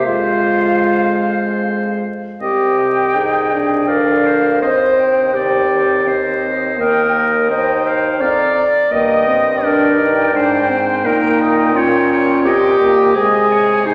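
Classical slow romantic movement for wind quintet, melancholic and solemn in a rubato triple metre, where an up-front, soft-attacked clarinet carries the accompaniment beside a warm French horn, an airy, distant concert flute sings the expressive, vibrato-touched melody, a clear, roomy oboe traces a second line from 0.1 s, and a bassoon with light vibrato holds the bass, all set in a reverberant concert hall with vinyl crackle, as an excerpt from a longer piece.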